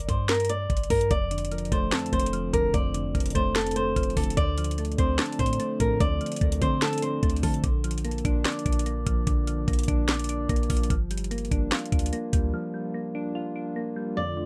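A fingerpicked flamenco guitar opens this brooding, dark trap excerpt in G minor, sitting up front with a low-pass filter and digital delay over a deep, boomy 808-style bass with a clean sine tone. A trap drum kit joins almost at once, its knocking kick, sharp snare, rim click and metallic hi-hats carrying a vintage 12-bit sampler grit, while the 147 BPM pulse moves with a half-time feel. Soon after, soft electric-piano-like synth keys add round, mellow accompaniment colored by chorus, tremolo and a filter sweep, moving through G5, F6, Dm7, Bb and Gm7. The guitar falls away at 7.6 seconds, and the drums and bass stop for a break at 12.5 seconds, leaving the keys alone before a brief guitar phrase returns. A hollow, flute-like pad with chorus touches in at 14.3 seconds as the cut ends, all under a light reverb.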